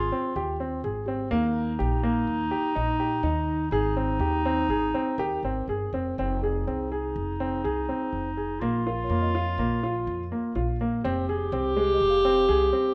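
Contemporary chamber music in 5/4 at 124 BPM, urgent and hypnotic, with a present grand piano playing arpeggios up front alongside a classical clarinet second line that sounds distant and roomy, while a woody pizzicato upright bass holds the low end. A delicate, bell-like celesta, slightly out of tune and soft in the background, appears briefly at 1.1 seconds and returns from 5.2 seconds as the harmony moves from Abmaj7 and Eb to Fm7 and Bbm. Moderate recital hall reverb surrounds the dark production in this passage cut from a longer piece.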